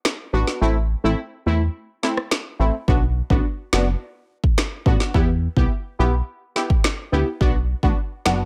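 An electronic afro-pop drum kit opens this sultry, hypnotic dancehall excerpt at 0.1 s, its deep kick, woody snare, rim click and finger snaps sitting up front in a straight 4/4 at 106 BPM. By 0.3 s a plucky analog bass and a synth brass stab have joined, moving through Bm and Am in B phrygian during the opening break, which runs to 2.9 s. The bass is punchy and funky, blending sawtooth, pulse and triangle tones with ring modulation and a fast-attack filter pluck that decays into a mellow, evolving low end. Above it, the brass stab sounds bright and detuned, with a filter sweep, chorus, phaser and sidechain pumping shaping its decaying hits. The harmony then settles on Bm, shifts to Em and returns to Bm, all inside a digital ambience that gives the groove a produced sheen.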